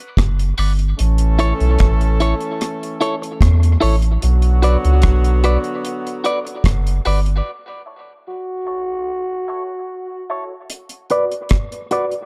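A horn section with light vibrato and octave doubling opens this slow dub reggae excerpt at 74 BPM, together with a clean, compressed electric guitar picking its accompaniment through tape echo. A deep, round sub bass and a dry, tight reggae drum kit of kick, hi-hat and rim click come in almost at once, sitting up front beneath the B minor and A chords. The mood is spacious and heavy, carried by breaks and a filter sweep that starts at 4.2 seconds and runs to the close. After the horns and bass drop away, a reedy, barky electric piano with light overdrive and fast tremolo adds stabs from 7.9 seconds. A raspy, growling tenor saxophone takes a brief melody on F#4 between 8.3 and 10.3 seconds, set in a dark production with light reverb and studio ambience.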